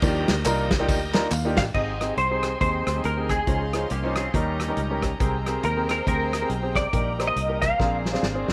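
A light, small-room reverb frames this reverent, hopeful stretch of uptempo gospel, cut from a longer piece and swinging in 4/4 at 139 BPM. A punchy, up-front drum kit and a round, dark fingered electric bass drive it, while a woody upright piano with long sustain adds a fill, and a shouting tonewheel organ with slow rotary speaker, overdrive and key click takes a short solo from the background alongside tambourine and handclaps until 1.7 seconds. A clean, compressed semi-hollow electric guitar with ensemble chorus then carries the melody over very quiet bowed strings rich in vibrato, a second hollow-body guitar adds a brief line with lush chorus around 3.9 seconds, and the drums close with a fill.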